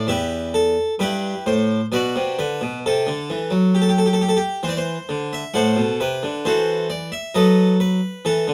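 Flowing and introspective, this short cut from a longer baroque-style suite movement unfolds in E minor at 66 BPM in 3/4, with a rubato feel that lets the phrasing breathe. A solo harpsichord in the French style, airy and plucked with a full tone from two sets of strings, sits up front in light reverb and spans E2 to F#5. Its harmony moves from E minor through B minor and C to a half-diminished chord over A, closing on B7 over F# at 7.3 seconds.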